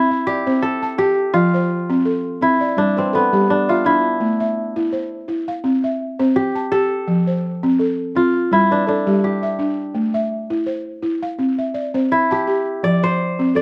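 West African traditional music with a joyful, warm mood and a gently swung groove, where a mellow, ringing fingerpicked kora carries the melody up front while a woody, buzzing balafon played with soft rubber mallets spins dark, smooth arpeggios beside it, both touched with slapback echo and light reverb in an open outdoor setting as the chords cycle through C, F, G and A minor across this short excerpt.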